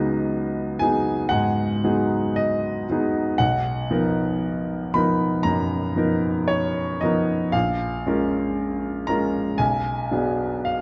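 A bright, intimate baby grand piano sits up front with its action noise audible, drifting in free rubato through luminous, dreamy impressionist harmonies (C#9sus4, Bmaj7#11, A#m7 and Bm6) across a range from A#1 to B5, framed by a moderate scoring-stage reverb and a dark production over this 10.8-second solo excerpt from a longer classical piece.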